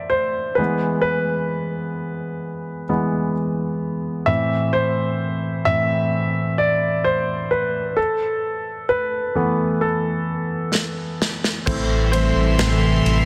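A clear, polished baby grand piano opens this longing, melancholic pop ballad alone at a slow 65 BPM, moving through A minor, E and an Esus4 under a lush hall reverb. A drum fill arrives at 10.7 seconds from an up-front acoustic kit with a punchy kick and a medium-tuned, softly clipped snare. At 11.7 seconds the music returns to A minor as a round sine sub bass, a reedy gut-string cello section, floating sul tasto strings and a dark, jumbo steel-string guitar picking tape-echoed arpeggios in the background all join the piano, before the recording is cut off.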